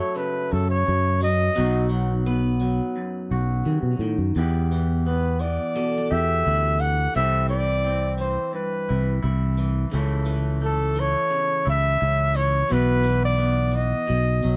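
A warm, up-front flugelhorn sings a heartbroken, melancholic folk melody with vibrato and scooped notes over a twangy, slightly broken-up electric guitar and bright picked acoustic arpeggios in the background, joined at 0.5 seconds by a round, punchy fretless bass, moving at a straight 86 BPM through chords from F#m to Bsus4 in light reverb, while the acoustic guitar drops out at 7.7 seconds in this excerpt cut from a longer piece.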